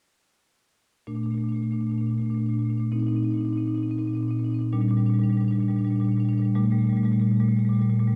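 A solo marimba played with medium mallets opens at 1.1 seconds, its warm tone sitting up front in the mix as it moves through a short passage of a contemporary classical piece in Bb major. The music flows in 6/8 at about 65 dotted-quarter beats per minute, with a rubato feel that gives the line a playful, unhurried lilt. The harmony drifts over a Bb foundation, from Bbmaj7 to Cm7/Bb, then Bb6, and settles on Gmadd9/Bb near 6.6 seconds. The marimba stays in a low-to-middle range, from Bb2 up to Eb4, which lends the sound a rounded, woody depth. A moderate church reverb with a long tail surrounds the instrument, and the production leans dark, wrapping this fragment of a longer work in a warm, resonant space until the playing stops at 8.2 seconds.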